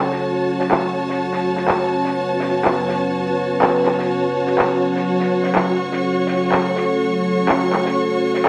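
Bass house at 124 BPM in F# minor, this short excerpt has a swaggering, bouncy feel, with a light swing on the sixteenths and a single F# minor chord held throughout. Up front, a deep, moody pad built from detuned sawtooth and sine layers with a sub octave holds sustained chords, its slow attack and long release softened by chorus and its own reverb. Alongside it, a rich, smooth string section plays a bowed ensemble texture with vibrato, sitting high and even. A modern acoustic drum kit with a medium-tuned snare, hi-hat and shaker stays in the background, filtered and set in small room ambience. Layered electronic handclaps join at 0.7 seconds, adding punch to a dark production finished with moderate plate reverb.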